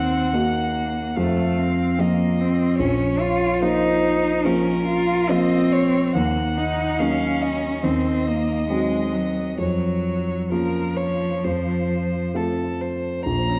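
From the first moment, a piano trio plays together in this slow, melancholic and solemn passage from a romantic classical movement in Bb minor, moving at 64-74 BPM in 4/4 with a free, rubato feel. A bowed violin carries the melody with a warm, vibrato-rich tone, a rich-toned cello sings a smooth second line beneath it, and an up-front concert grand offers mellow accompaniment with a deep bass. The dark production sits in a reverberant recital hall, and the passage, cut from a longer piece, ends at 13.6 seconds.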